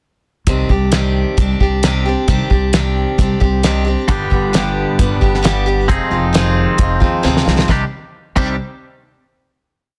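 A short, dusty and wistful piece of folk rock with a heartland rock feel opens at 0.5 seconds with a boxy acoustic archtop guitar strumming open chord shapes up front, finger squeaks audible under the pick. An upright bass enters alongside it, plucked on gut strings with a woody, thumpy tone and locked to the kick drum. The cloth-damped kit is dry and dark, with a fat snare, tight kick and dark cymbals driving a steady rock groove. At 4.1 seconds a bright, clean, twangy electric guitar comes in up front with compressed, ringing chords as the harmony moves from a minor opening through G and F minor seventh. A drum fill at 7.2 seconds leads into a final chord that rings out over a small room, all in a dense, heavily limited modern mix.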